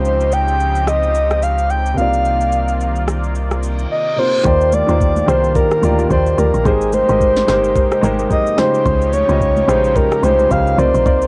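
Deep and soulful, this amapiano excerpt moves at 109 BPM with a swung sixteenth feel, as a breathy, flute-like synth lead carries the melody up front through chorus, tremolo, cassette-tape colouring and analog delay over a warm grand piano, a lush, warbling unison pad pumping softly in the background, a punchy sine sub bass and an electronic afro-pop kit with a knocking kick, sharp snare, rim click and shaker roughened by 12-bit sampler grit. A reverse cymbal rises at 3.7 seconds into the second section at 4.5 seconds, where a woody, FM-tinged log drum bass takes over the low end, joined by very quiet, close and dry congas and hollow, dark organ stabs. The harmony drifts through lush extended chords such as Dbmaj9#11 and Ebmaj9, all heard in a small booth on a home cassette recording.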